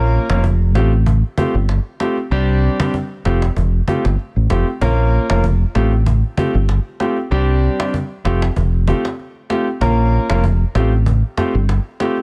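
Afrobeats with a breezy, sunny mood and a lightly swung sixteenth-note feel, cut from a longer piece. A round, punchy fingered electric bass sits up front beneath a natural-sounding concert grand piano with deep low end, which plays accompaniment chords cycling through Bbm, Fadd9/A, Csus2 and Fadd9. A woody cajon struck with hard hands adds faint snares and vintage 12-bit sampler grit lower in the mix, all in a dry sound, with the bass stopping at 11.8 seconds just before the piano and cajon end at 12.2.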